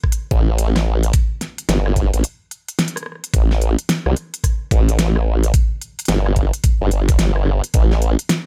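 Glitch hop at 109 BPM in 4/4, this short excerpt in A minor struts with a playful, swaggering mood and a 16th-note swing of 63%. An electronic kick drum with a knocking, tape-warm punch sits up front alongside a pop drum kit of fat snare, crisp hi-hats and rim clicks, both carrying studio reverb. From 0.3 seconds a formant-sweep wobble bass enters between G1 and C2, its detuned sawtooth and sine layers thickened by chorus and tube saturation into a compressed, sustained growl with a fast attack. A break interrupts the groove from 2.2 to 3.3 seconds before the parts resume. The overall sound is dry and close, with little room ambience around the produced, layered tones.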